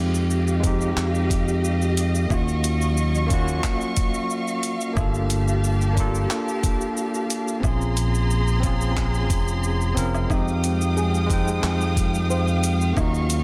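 A straight 4/4 groove at 90 BPM drives this smooth sunset chillout excerpt: a gritty, overdriven electronic kick thumps beneath a dusty, sampler-style kit of handclaps, hi-hat, shaker and woodblock, while a growly, up-front fingered electric bass anchors the low end. A bell-like tine electric piano, filtered with a sweep throughout and touched by digital delay, plays clean accompaniment over lush, distant bowed strings holding vibrato-rich chords through Fm9, Ebm9, Gm9 and Bbm9, all tuned to A4 = 435 Hz. At 10.3 seconds a mellow, shimmering steel pan enters in the background with soft arpeggios, carrying 12-bit sampler grit and delay, inside a dense, heavily limited mix with light reverb.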